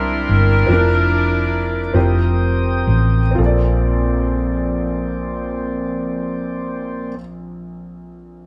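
Lightly reverberant, this slow gospel piece sounds like a band playing live in one room, uplifting and reverent in Bb major, in a straight 6/8 at 39-52 BPM that slows over the first 3.4 seconds. A tight, smooth-topped saxophone section with jazz-style vibrato carries the melody up front until 2.4 seconds, while a warm concert grand with audible action noise and deep bass accompanies through to 8.5 seconds. A clean tonewheel organ turning through a slow rotary speaker holds sustained chords, and a dark, round, amped hollow-body short-scale electric bass, played fingered, sits prominently underneath as the harmony moves from C9 through Bb/F and F9sus4 to Bbmaj9.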